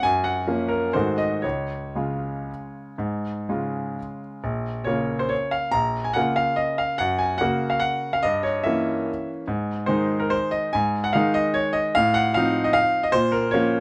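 Classical piano waltz in 3/4, sparkling and graceful, with a rubato feel that lets the tempo drift between 113 and 157 BPM across this short passage cut from a longer piece. A solo grand piano with a bright, open tone and short sustain plays throughout, spanning Bb1 to Bb5, moving from Gbmaj7 and Ab7b9 to Db before a new section at 4.4 seconds turns to Bbm and passes through Gdim7 and F7/A to settle back on Bbm. The dry, close recording places the piano up front and captures its brilliant detail.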